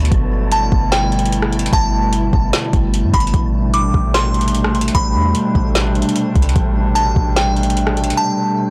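A half-time 4/4 groove at 149 BPM carries this ethereal, hazy cloud-rap excerpt in A minor, where a smooth R&B kit with a woody snare and metallic hats sits up front over a round, deep 808-style bass, a warbling, nostalgic pad pumps under sidechain with chorus and reverb through chords moving from G69 to Am11 at 3.3 seconds, a delicate FM bell tinkles a bright melody through chorus and tape echo, and a breathy wind-like noise layer drifts in the background, all within a blown-out, overdriven recording that falls into a silent gap at 8.2 seconds.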